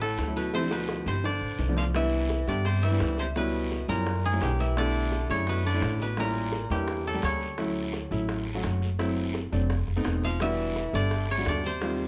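Lightly reverberant, this sunny, danceable Afro-Cuban jazz excerpt at 170 BPM in D major sets a dry, fingerpicked koto melody and a thumpy, woody pizzicato upright bass up front, while a bright baritone saxophone with vibrato and scooped notes plays a second line that drops out at 7.5 seconds and returns at 10.2 seconds, a baby grand piano accompanies with natural warmth, and tight high-tuned bongos and grainy, vintage maracas sit in the background alongside a raspy guiro, with a drum fill arriving early on.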